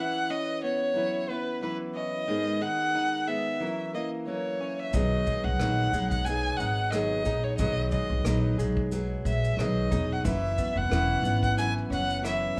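Acoustic pop in B major at 90 BPM with a gentle swing, heartfelt and sunny, this short excerpt opens with a bowed, focused violin carrying the melody over fingerpicked steel-string acoustic guitar and clean, compressed electric guitar arpeggios with spring reverb. At 4.9 seconds a woody pizzicato upright bass, sitting up front, and a soft brush kit with tight kick, rim click and shaker join in as the harmony settles onto B6. The violin's vibrato and slightly boxy tone stay prominent in a rough, homemade mix with small-room ambience and light reverb.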